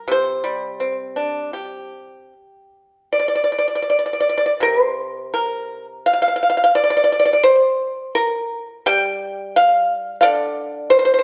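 A dark production set in a moderate recital hall reverb frames this short cut from a longer piece of Chinese traditional solo plucked-string music, flowing and elegant in a rubato 4/4 that drifts between 74 and 89 BPM in C shang mode. A solo pipa, played with fingerpicks, sits up front with a bright, dry, percussive attack and a slapback echo, ranging from C3 up to G5. Its opening phrase gives way to a new section at 3.1 seconds, which carries through to the end at 11.2 seconds.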